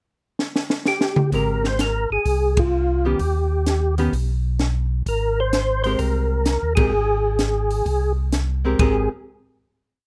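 Soul jazz organ trio piece at 128 BPM in Ab major with a swinging, soulful mood: a compact cocktail drum kit opens with a fill at 0.4 s, with dry, dark cymbals, a high-tuned snare and a punchy kick as the sticks keep a backbeat and time on the hi-hat; a percussive tonewheel organ enters at 0.9 s with a round, clean call-phrase melody through a slow rotary speaker and chorus vibrato; and at 1.3 s a mellow tonewheel organ joins with a two-feel bass carrying key click and slow rotary, alongside a hollow-body archtop guitar comping in picked, syncopated three- and four-note chord shapes as the band hits accents over Abmaj9 and Ebaug harmonies, captured with close, detailed microphones and light reverb.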